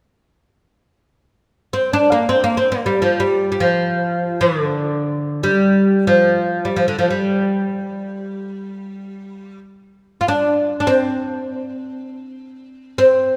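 Chinese traditional music in a tender, wistful mood, this passage cut from a longer piece features a solo acoustic oud, its plectrum-plucked double strings sounding woody and deep. Placed up front from 1.7 to 13.4 seconds, it is bathed in the long, wet reverb of a concert hall.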